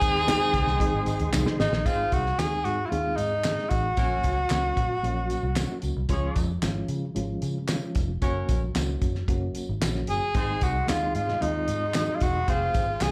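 A live club take of uptempo 1960s-style soul opens with the full band at once: a breathy, intimate tenor saxophone up front carrying the melody, a tight horn section with octave doubling playing a second line, and a reedy electric piano with fast tremolo, all three touched by slapback echo. Underneath, a round, punchy muted electric bass and a cloth-damped, thuddy drum kit with a fat snare and tight kick keep a straight, danceable 113 BPM in Ab mixolydian, while tambourine, tube shaker and group handclaps add sparkle. A soft, flute-like tonewheel organ with fast rotary speaker and key click sits in the background at the start alongside very quiet, ringing congas, and both fall away during a drum fill that runs from 1.3 to 1.9 seconds. The saxophone rests from 5.8 seconds, then returns at 10.1 seconds with its scooped, whispered phrasing as the organ and congas come back, with the chords moving from Ab through Gb/Bb, Db and Gb, then back to Ab and on to Fm. 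Heard through the venue's PA with light club reverb, the drums carry a gritty, rolled-off vintage character, and this fragment is cut from a longer performance.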